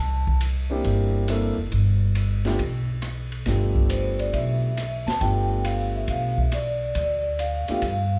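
Swinging and warm, this short cut from a longer small-group swing and bop jazz piece rests on a woody, up-front pizzicato upright bass heard throughout, joined at 0.3 seconds by a small-room acoustic drum kit with dark cymbals and a boomy kick, a smooth, long-sustaining vintage baby grand piano accompanying from 0.7 seconds, and a mellow soft-mallet vibraphone with fast motor vibrato that rings briefly at the start before returning airy and metallic at 3.9 seconds, all in light reverb over a move from C7 to G7.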